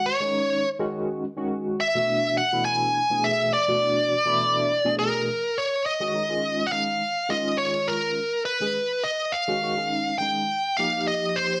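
Set in 6/8 at 69 beats per minute with a straight feel, this short jazz excerpt has a driving, funky mood, moving through G#7sus4 and Bm7 before shifting at 5.3 seconds into a new section built on suspended harmonies such as G#sus4 and D#9sus4. An overdriven, bluesy lead guitar carries the melody up front, its picked, distorted tone thickened by slapback echo and plate reverb. Beneath it, a bright, barky tine electric piano played clean through a combo amp supplies accompaniment, shimmering with medium tremolo and analog chorus inside a moderate studio room.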